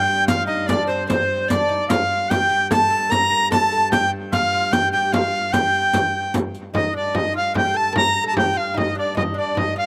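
A reedy tenor recorder with an airy chiff and vibrato leads this driving, ancient-sounding medieval dance in triple time, sitting up front with a slapback echo. Behind it, a punchy, distant shawm (also echoed) and a plectrum-plucked fretless oud with doubled strings carry a second line over a biting, bowed viola da gamba drone. A compressed, saturated frame drum and a close riq with dark jingles, both struck with hard hands, add percussion until the riq drops out at 6.6 s, just before the music moves into a new section at 6.7 s. The sound is dry and outdoors, and the recording is a fragment of a longer piece.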